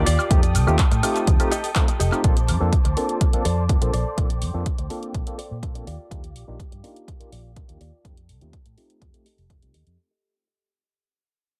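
Funky and feel-good, this filtered disco house excerpt runs at 124 BPM in 4/4 with a straight feel in Bb major, cut from a longer piece and fading out while a filter sweep runs across its full 10 seconds. An up-front electronic kick drum, punchy and tape-warm, enters at 0.3 s beside an analog drum machine playing handclaps, hi-hat, shaker and woodblock, re-recorded in a small room with pumping on the hats and percussion plus tape echo. A dark, round, foam-muted fingered electric bass sits prominently underneath, pumping and low-pass filtered, while a barky, lightly overdriven tine electric piano comps through a combo amp with phaser, pumping and tape echo. A direct-recorded clean electric guitar adds a twangy, compressed picked riff with its own echo, and a lush, close studio violin section holds bowed chords with vibrato, roughened by 12-bit sampler grit. The harmony moves from F9 to Bbmaj9 at 2.2 s, Ebmaj9 at 5.9 s and back to F9, all within an echo-heavy mix with light reverb.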